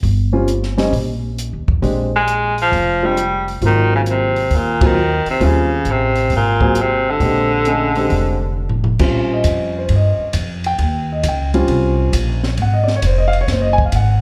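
Upright bass and a compact cocktail kit open this relaxed, swinging excerpt of small-group jazz at 134 BPM in Eb mixolydian. The woody, pizzicato bass sits up front beside dry drums with dark cymbals, a high-tuned snare and a punchy kick, while a concert grand piano with deep bass and slapback echo comps over rich thirteenth chords. A vintage-toned baritone saxophone takes the melody with vibrato from 2.2 to 8.9 seconds, and a drum fill leads into a new section at 9.0 seconds, all heard through a club PA with light reverb and live ambience.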